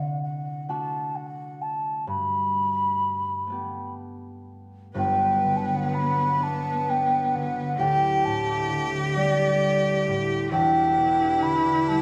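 A wooden baroque flute carries the melody up front in this wistful, tender Celtic slow air, its pure, hollow tone shaded with vibrato, crisp at the attack, and trailed by a slapback echo. Beneath it, a concert harp is fingerpicked with a ringing, acoustic sound, setting out a rubato 6/8 pulse at about 43 BPM in G major, tuned to A4 = 436 Hz. At 4.9 seconds a single bowed cello enters with a biting, intense second line touched by light vibrato and set back at a distance. An accordion joins with it, holding sustained chords whose reedy, sweet voice carries a light tremolo tuning. The harmony moves from D through Gadd9 to Gmaj7, Dsus4 and Em7, all within a moderate recital hall reverb in this short passage cut from a longer piece.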